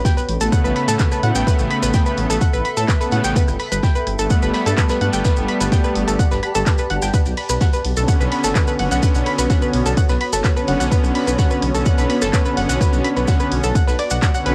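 A rumbling, detuned sawtooth bass with sidechain pumping sits up front in this dark, melancholic melodic techno excerpt at 127 BPM in B minor, alongside a deep, layered electronic kick, a round, bright analog pluck playing arpeggios and brassy, warbling analog pad stabs, both with chorus, analog delay and cassette tape colour, a blurred granular cloud pad in the background, a dry, punchy analog drum machine with handclaps, hi-hat, ride cymbal and rim click, a very quiet soul drum kit with hi-hat and fat snare, and grainy, mellow maracas, moving over Aadd9, Gadd9 and Bmadd9 chords in a lightly reverberant home cassette recording.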